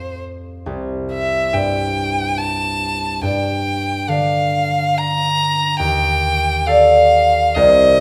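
Pastoral and luminous, this short impressionist classical passage for violin and harp is cut from a longer piece and moves in a rubato 3/4 at roughly 64-73 BPM. A clear, smooth violin carries the melody from the first moment, its single bowed line sung with vibrato and an even, close presence up front, ranging from C5 to Bb5. The concert harp supports it throughout the full 8 seconds, its fingerpicked strings ringing with a warm acoustic glow that spans from a deep C2 up to D5. The harmony drifts through F69, Csus2 and Gm7 before settling on a shimmering Ebmaj7#11 at 5.8 seconds. A moderate recital hall reverb surrounds both instruments, giving the duo an airy sense of space.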